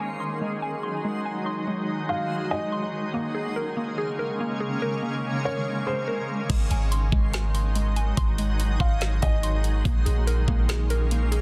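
Atmospheric cloud-rap in hip hop form, this ethereal, hazy excerpt moves at 143 BPM in a half-time 4/4 feel, with chords alternating between Ab7 and Bbm11. From the start, a shimmering ambient pad holds sustained chords, its detuned unison voices lifted by an octave-up shimmer, chorus, reverb and sidechain pumping. Alongside it, a woody, round mallet-like synth pluck spins arpeggios through chorus and digital delay, while a reversed, swelling texture drifts dreamily in the background. At 2.1 seconds a felt-muted upright piano enters with a soft, intimate melody, its action noise audible and its short notes echoed by delay, before dropping out at 9.8 seconds. At 6.5 seconds the trap drum kit arrives up front with a knocking kick, a woody snare, metallic hi-hats and crash cymbal, joined by a deep, boomy, clean 808-style bass, all set in a dense, heavily limited modern master with little reverb.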